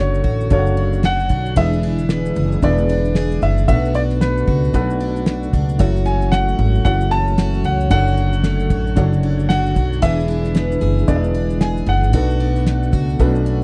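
A dry, close 1970s-style studio sound frames this wistful, reflective acoustic pop fragment at 114 BPM with a swung sixteenth feel, where a woody, polished upright piano sings the melody with long sustain over a soft felt-muted upright piano with audible action noise in the background, a bright, shimmering octave-doubled twelve-string guitar, a very quiet tonewheel organ with key click and slow rotary speaker, an up-front pizzicato upright bass, and a cloth-damped thuddy drum kit of fat snare, tight kick and shaker entering at 0.1 s, all moving through Dmaj7/F#, E7, Bm7 and F#m7.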